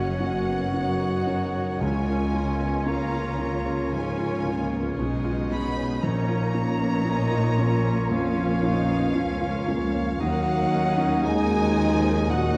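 Bathed in a wet scoring-stage reverb within a dark, warm production, this moving, sorrowful cinematic fragment drifts in free rubato, with a distant, lush violin section singing the melody over a second line of violins, a bright, present oboe, a mellow clarinet and a pure, hollow silver flute. Beneath them, a felt-muted upright piano with audible action noise and an expressive viola section fill out the accompaniment, dark French horns hold tight sustained chords, a very quiet concert harp rings out arpeggios, and rich cello and focused double bass sections anchor the bass. A hard-malleted timpani sounds briefly from 1.8 to 3.4 seconds.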